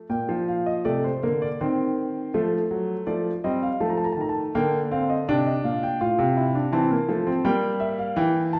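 Solemn and driving, this short fragment of a baroque-style three-part fugue in Bb major moves at a steady 82 BPM in 4/4 on a solo concert grand piano whose intimate, natural tone, deep bass and audible action noise sit up front within a reverberant recital hall, its harmony passing from Bb through diminished and dominant-seventh chords before it is cut off at 8.6 seconds.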